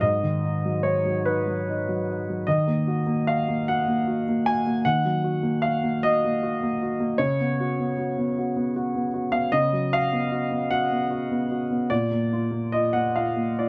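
This is neoclassical minimalist piano, reflective and intimate, a brief passage of about 13.7 seconds taken from a longer piece. A baby grand plays alone throughout, its tone warm and worn, with a long sustain and an up-front presence. The music moves in a slow six-eight with rubato and uneven beats, so the pulse breathes freely. The harmony passes through Abm7, Ebm and Db7sus4 before arriving on Bb at 11.9 seconds, within a range from Ab2 up to Ab5 and tuned slightly below standard pitch at A4 = 437 Hz. Close, detailed miking and very little reverb keep the sound dry and near.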